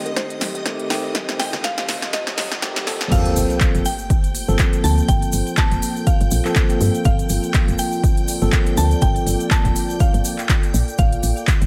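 A moody deep house excerpt at 122 BPM in G minor opens with a mallet-like FM synth pluck melody over a dark, detuned ambient pad, clean tine electric piano stabs through a combo amp under a filter sweep, and a shimmering vintage string machine, while a riser, a drum fill and soft, bright bongos and congas build toward the drop. A punchy, up-front electronic kick and a kit with smooth hats, handclaps, snare and crash drive the swung groove from the opening moments, with a woody, round FM bass joining beneath at half a second and sidechain pumping on the bass, pad, strings and piano. At 3.1 seconds the drop lands with an impact and a grainy egg shaker enters. The harmony moves from Am7b5 to Gm11 and settles on Am7 near the close, with tape echo on the pluck and piano and a light reverb over the mix.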